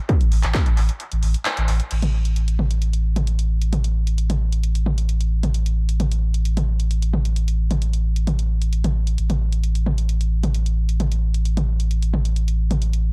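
A heavy, layered, tape-warm electronic kick, playing only from 0.1 to 0.6 seconds, opens this relentless, industrial excerpt of driving peak-time techno at 132 BPM alongside a punchy, dry analog drum machine of crash cymbal, handclaps, hi-hat and toms whose hats, cymbals and toms pump under sidechain through analog delay. A warm, round sub bass with overdrive, a low-pass filter and sidechain pumping enters at 0.2 seconds and sits up front, with a break from 1.0 to 1.9 seconds and a band accent at 1.5 seconds in a dry, echo-heavy mix.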